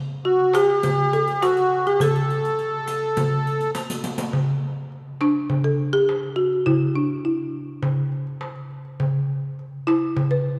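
A woody folk marimba struck with medium mallets carries the melody of this festive Arabic maqam ensemble piece, its hardwood bars sounding dry, rustic and up front. Beneath it, a reedy accordion with light tremolo tuning adds a sweet, vintage second line, close and slightly band-limited, before dropping out at 3.7 seconds. The darbuka drives the straight groove with a clay-shell, natural-skin tone and hard-handed attack, while a quieter riq adds dark, compressed and saturated jingles until 4.3 seconds. A drum fill from 3.7 seconds leads into the second half, where marimba and darbuka continue together. The whole ensemble sits in a reverberant church-like hall that lends a generous, glowing sense of space to this warm excerpt from a longer work.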